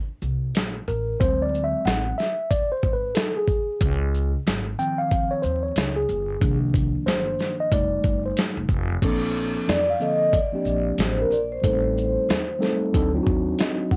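A mellow, clean tine electric piano leads this cool, relaxed jazz-hop excerpt, carrying a solo through the first 9 seconds over lush extended chords. Up front beneath it, a woody, dark pizzicato upright bass on gut strings and a gritty, compressed sampler-style kit with a thumpy kick, snare, hi-hat, shaker and crash cymbal hold a swung groove, with the kit and piano both coloured by cassette tape. At 9.7 seconds a metallic, ringing vibraphone played with soft mallets briefly takes the melody, its slow motor vibrato bathed in plate reverb and tape echo, while vinyl crackle and a dusty, band-limited home-cassette sound give the whole recording a lo-fi haze.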